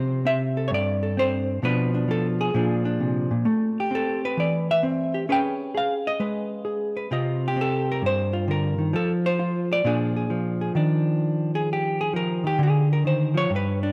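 Relaxed and sophisticated, this brief solo jazz excerpt swings at 131 BPM in 4/4, with a dark, clean, fingered hollow-body electric guitar playing up front across a range from G2 to G5, moving through chords such as Csus2, Bb9 and Cm11 before settling into Eb major at 10.8 s, all bathed in a moderate plate reverb within a rough home demo mix.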